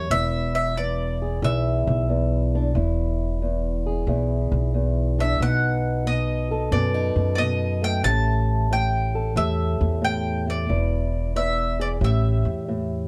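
A bright bowl-back mandolin carries the melody up front, its doubled strings picked with a touch of plate reverb, in this swaggering, laid-back acoustic country blues excerpt with a loping swung feel. Beside it, an old ladder-braced acoustic guitar is fingerpicked with a dark, boxy tone and audible finger squeak, while a woody pizzicato upright bass on steel strings anchors the low end. All three play throughout the 13.1 seconds over an E to B7, A5 and E7 progression, in a dry, dark, warm production.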